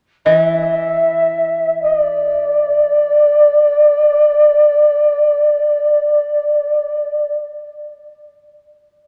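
A long, wet church reverb wraps this calm, austere piece of Japanese traditional chamber music, which moves in free time and is cut from a longer work. An airy, end-blown bamboo shakuhachi sits up front from 0.3 to 7.4 seconds, carrying the melody between D5 and E5 with vibrato and a crisp, chiffy attack. Far beneath it, a mellow, woody koto plucked with fingerpicks holds a dry low E accompaniment until 3.6 seconds.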